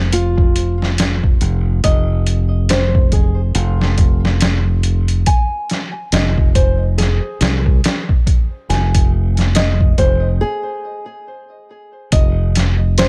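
A digital ambience wraps this brooding, cinematic trip hop excerpt, which is cut from a longer piece and sits at a slow 70 BPM in 4/4 with a swung sixteenth-note feel in F minor. Up front, a sampler-style drum kit sounds gritty and pitched down, compressed and re-recorded in a small room, with a thumpy kick, a medium-tuned snare and hi-hat. Just as forward, a bright fingered electric bass growls low in its register. Above them, a dark, small-sounding nylon-string guitar plays fingerpicked arpeggios through a delay, set back in the mix. The harmony rests on F minor until a break arrives at 10.4 seconds, and the chord shifts to an F7 voicing that omits the third at 12.1 seconds as the passage closes.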